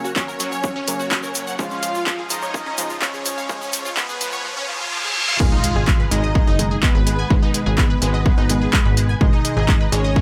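A cinematic, melancholic stretch of melodic techno, cut from a longer piece, builds under a filter sweep as a thick, nasal unison lead with lush chorus and vibrato carries the melody over a soft supersaw second line in the background, bright phased unison pluck arpeggios and punchy, brassy synth stabs, all pumping with sidechain and trailed by dub echo or delay, while a grainy egg shaker plays until 4.4 s and a very quiet riser and reverse cymbal lead into the drop at 5.4 s. There an impact lands and a punchy, funky analog bass enters, joining the heavy, overdriven kick up front and a deep house kit of handclaps, smooth hats and crash cymbal, as the chords move from F# and C# to G#m.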